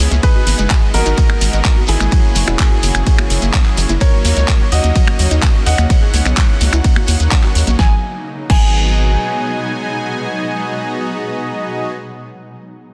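A dense, heavily limited modern master with digital ambience opens on the drop of a dreamy, expansive progressive house cut taken from a longer piece, moving in a straight pulse through G#m7, F#7, D#m7 and C#m7. A clear concert grand piano carries the melody with delay, shadowed by a smooth supersaw second line, while another soft supersaw plays stabs and a shimmering, ethereal ambient pad holds sustained chords in the background, colored by an octave-up shimmer, chorus and built-in reverb. Sidechain pumping breathes through the supersaws, the pad, the dark, gentle pluck arpeggios and the round, deep analog bass, which sits up front with a mellow, wave-folded tone. The punchy electronic kick leads the rhythm, joined by a pop kit with a fat, softly clipped snare, metallic hats, handclaps, finger snaps, crash and ride, plus very quiet, close and dry bongos, congas and cowbell and a grainy shekere. 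Around 7.8 seconds the hand percussion stops, and by 9.2 seconds the drums, pluck and bass have fallen away, leaving the piano, supersaws and pad to float on.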